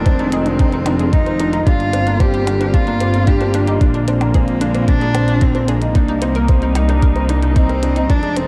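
Piano and strings electronica in 4/4 with a straight feel, this short excerpt from a longer piece sounds moving and intimate. A dark, woody solo cello carries the melody with vibrato, while a con sordino string quartet holds veiled sustained chords in the background and a felt-muted upright piano repeats a mellow, vintage-toned riff. Underneath, a bowed symphonic double bass section plays the bass line with a soft attack and a pure sul tasto tone, sitting up front and pumping with sidechain. From 0.1 seconds, an analog pluck adds bright, round arpeggios low in the mix, colored by chorus, tape echo and sidechain pumping, alongside clicky electronic hi-hats and percussion blips in studio reverb and a soft, overdriven electronic kick placed forward in the mix. The chords move through Fm7, Gm7, Bb7 and Cm7, and the production stays warm, with light reverb and a small room ambience.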